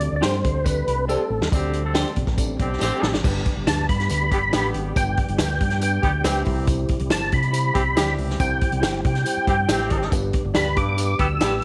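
The recording has a vintage studio-room sound, lightly touched with reverb, in an uplifting, joyful 1960s-style soul groove. Up front, a clear, clean tonewheel organ carries the melody with key click, third-harmonic percussion, chorus vibrato and a slow rotary speaker, taking a short solo turn at the opening. A second, fatter and lightly overdriven organ holds very quiet sustained chords beneath it. A round, direct fingered electric bass and an acoustic drum kit with a tight kick, medium-tuned snare, hi-hat, crash and a rolled-off top drive the track, with brief drum fills, while a jingly tambourine sits distant in a large room and a bright, bell-like tine electric piano adds accompaniment in the background. A punchy, tight horn section with light vibrato enters at 1.5 seconds with a second line, and a hollow-body semi-hollow guitar fires picked, phased stabs near the start and again from 10.5 seconds as the harmony moves from a suspended dominant to G and C.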